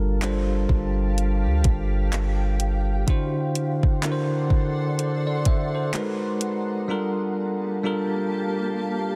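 A bright, bell-like tine electric piano and a deep, boomy 808-style bass open this moody, late-night contemporary R&B excerpt at a slow 63 BPM in G dorian, with a cloudy, detuned granular pad drifting in behind them through its own reverb. A tape-warm electronic kit with a soft kick, warm hi-hats and handclaps adds a gentle 16th-note swing, while the harmony moves from Gm9 to D7 and Abm9 before settling back on Gm9. The bass drops out at 3.0 seconds and the drums at 6.7 seconds, leaving the piano and pad in a dry, dense, heavily limited modern mix.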